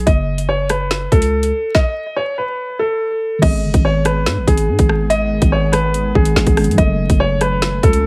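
Drill hip hop in G# phrygian at 143 BPM with a half-time feel, this tense, ominous excerpt opens on a concert grand piano carrying the melody up front, its intimate tone showing audible action noise and long sustain through a low-pass filter and tape echo. A growling, buzzy 808-style bass and an electronic drill kit sit alongside it, the drums pairing a hard-clipped kick and woody snare with metallic hats, rim clicks and crash cymbal. A stop falls from 1.7 to 3.4 seconds, after which the second section arrives on G#m and muted, felt-like synth keys slip in quietly in the background, soft and dark with chorus. At 4.4 seconds an ethereal, airy pad adds sustained, detuned chords with a slow attack, ensemble chorus and built-in reverb, before the harmony shifts to F#madd9. The dry mix is coated in vinyl crackle, and the clip is cut from a longer piece.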